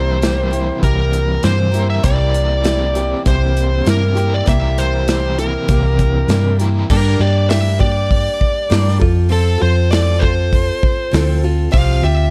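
A round, dark hollow-body electric bass sits up front in this wistful, dusty stretch of folk rock and heartland rock, moving at 99 BPM in a straight 4/4 from a short cut of a longer piece. Above it, a smooth overdriven lead guitar carries the melody through the whole passage, while a bright, boxy parlour-style steel-string acoustic guitar, picked on fresh strings, fills in the accompaniment. A double-tracked overdriven electric guitar with tremolo plays a riff until 6.9 seconds, where the harmony shifts from a C7 toward Gm, F and a closing Csus4. A natural country drum kit with a tight kick, medium-tuned snare, hi-hat and crash cymbal enters at 0.2 seconds and stops at 11.9 seconds. The production is dark and warm, set in a small room ambience.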